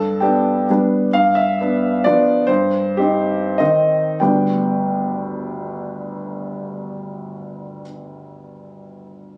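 A clear, intimate grand piano plays alone in this graceful, proud excerpt of a romantic classical dance in 3/4 and G major, its dotted rhythms moving with rubato between 90 and 141 BPM and slowing from 0.5 to 4.2 seconds as the harmony passes through G7 and C minor over G before settling back on G. The piano sits up front with audible action noise and a natural tone, captured on a phone in the room with light club reverb and compression.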